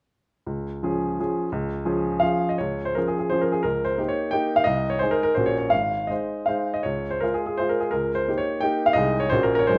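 A clear, polished baby grand piano plays alone, up front in a moderate large-studio reverb, in this brief excerpt of a rustic, proud romantic dance in triple time, its dotted rhythms pushed and pulled with rubato as the harmony circles from Db through Eb7/Db and Ab/C to Gb/Bb and back.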